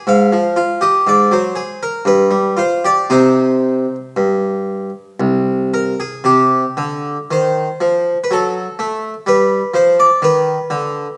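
A dark, moderately reverberant recital-hall sound surrounds this short passage cut from a longer baroque-style suite movement, with the solo harpsichord placed up front and mid-forward. The instrument is an Italian-style harpsichord with two sets of strings, giving a full, plucked tone that ranges from the deep bass into the upper middle register. The movement is in triple metre, dance-like and flowing, and the beats stretch and give in a supple rubato rather than holding strict time. The opening phrase moves through minor and dominant-seventh harmonies before settling on the tonic minor chord. A second phrase begins at 6.3 s, passing through another minor chord before returning to a dominant seventh, and the passage breaks off at 11.2 s.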